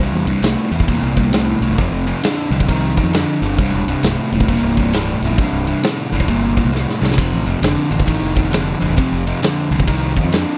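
Blues rock power trio with a southern rock lean, driving and gritty in a swung 4/4, where a crunchy, double-tracked overdriven guitar riff sits up front over a growly fuzz bass and a big acoustic kit with a punchy kick and bright cymbals that enters at 0.3 seconds and throws in a fill at 6.7 seconds, heard through a dry, close 1970s-style studio sound in this short cut from a longer piece.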